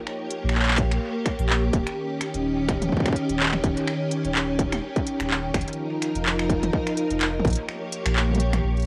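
A silky, warbling string machine with ensemble chorus holds slow-attack chords over Bbm6, Eb7 and F7sus4 in this glitchy, eerie IDM fragment cut from a longer piece at 126 BPM with a light 16th-note swing, joined by a round, deep sine sub bass, an up-front industrial kit of finger snaps, handclaps, smooth hi-hats and toms, and a distorted electronic kick that enters at 0.8 seconds and stops at 7.6 seconds, all set in a moderate room reverb with the strings, kit and kick carrying a tape-softened cassette character.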